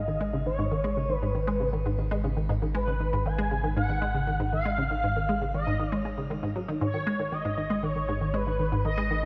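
Hypnotic and mysterious, this ambient, sequencer-driven space music moves in a steady, straight 4/4 through a short excerpt cut from a longer piece. A juicy, squelchy blip pluck repeats a resonant riff in the low-middle register, bright and up front, with its fast attack and short decay coated in analog chorus, shimmer reverb and tape echo. Above it, an expressive synth lead sings a smooth, sustained melody with a soft attack, vibrato and a filter sweep, opening on a high G#5 and carried by ensemble chorus, shimmer reverb and tape echo. Beneath both, a round analog bass holds a deep, dark G#1 throughout. All three parts play from 0.0 to 9.3 seconds, set in a moderate plate reverb that lends the mix a spacious, drifting depth.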